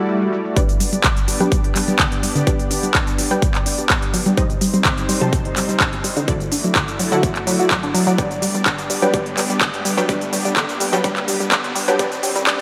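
A very quiet electronic swell opens this hopeful, expansive progressive house excerpt in G major, joined at once by a lush, detuned supersaw pad holding sustained chords and a bright unison pluck firing stabs in the background, both pumping against the sidechain, the pluck trailing delay. At 0.1 s a crisp big-room kit with handclaps, hi-hat and shaker settles up front at 126 BPM in a straight 4/4, its hats, snare and percussion dulled by low-pass filtering. At 0.6 s the build-up begins as a punchy, tape-warm electronic kick joins it up front. A nasal, round analog pluck enters at the same moment with arpeggios coloured by chorus, phaser and delay, while a deep, dark round bass sits barely audible underneath. Filter sweeps run through both the arpeggio and the stab sound for the rest of the passage, and a faint riser sits behind it all. The chords cycle through Dadd9, G and Cm, with a lush hall reverb giving the mix a spacious, airy sheen.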